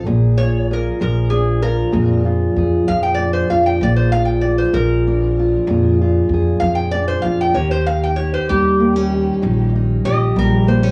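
From the opening moment, a fingerpicked steel-string acoustic guitar with warm, fresh strings and a pizzicato upright bass with a woody, growly tone set a laid-back, rollicking country blues groove in Bb mixolydian at 64 BPM in 12/8, moving from Bb7 to Eb7 at 7.6 seconds. Over them, a metal-body resonator guitar played with a steel bar and fingerpicks takes a metallic, nasal slide solo from 0.1 seconds to the end of this cut from a longer piece. All three parts sit up front in a small, homey room, and both guitars carry the grain of cassette tape.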